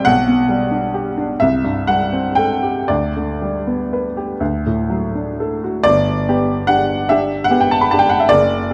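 The music moves in 6/8 with a free, rubato feel, its dotted-quarter pulse drifting slowly between 37 and 53 BPM. This is a dreamy, tender romantic nocturne in G major, played by a single upright piano that carries the whole piece alone from 0.0 to 8.7 seconds across a range from F#1 to B5. The piano sounds woody and slightly detuned, with a short sustain and a natural, up-front presence, set in a recital hall whose reverb gives the dark production a soft glow. The opening section drifts through G/B, Am7/C, G/D and D before a second section begins at 5.8 seconds, settling back onto G. As a brief fragment cut from a longer piece, it captures an intimate, unhurried moment.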